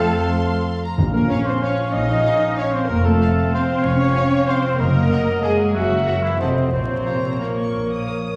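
Classical orchestral music in a rubato triple metre, sweeping and bittersweet, cut from a longer piece. A silken violin section in the background carries the melody high above a very quiet second violin line, an airy flute group and a present cor anglais. Beneath them a viola section, a lush cello section and a distant double bass section hold the lower strings, while a mellow, ringing harp arpeggiates, a soft-attack trumpet adds stabs, and hushed trombone and French horn sections sustain chords. Round, soft-malleted timpani are heard between 1.0 and 1.4 seconds, all heard from further back in a reverberant recital hall with a faint vinyl crackle.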